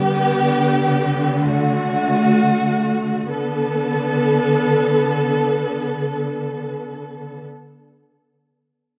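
Menacing and eerie, this brief hip hop fragment in B minor, cut from a longer piece, drifts in free time. A lush, bowed string section sits up front with expressive vibrato and a smooth top, holding sustained chords that move from G to D and then to Bm7 before stopping at 7.4 seconds. A mellow, intimate baby grand with audible action noise accompanies from the background until 1.5 seconds, and the whole is wrapped in a moderate plate reverb and a dark production.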